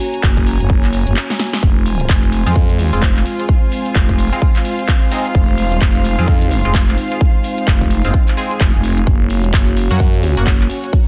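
A dark, moody analog pad, intimate bowed strings and a big-room drum kit of punchy snare, handclaps and metallic hats open this gritty, bouncy bass house clip, joined at 0.2 seconds by an up-front electronic kick and a growling, overdriven, sidechain-pumped FM bass, with a very quiet, grainy egg shaker arriving after a brief break and drum fill, and a nasal, band-passed chord stab with phaser and digital delay entering at 2.5 seconds, all in a dense, heavily limited modern master.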